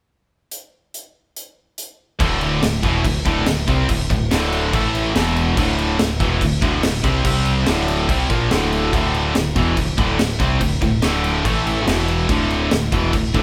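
Captured as a band playing live in one large studio room with moderate reverb, this aggressive heavy metal excerpt at 143 BPM opens with a big, up-front acoustic drum kit of crash, hi-hat, punchy kick and high-tuned snare at 0.5 seconds, before three guitars and a picked electric bass enter at 2.2 seconds: a double-tracked, overdriven semi-hollow guitar, a scooped high-gain guitar and a tight distorted guitar set further back, all riffing over the dark, round bass through heavy power-chord changes on D5, A5, E5 and C5 with a turn to D minor.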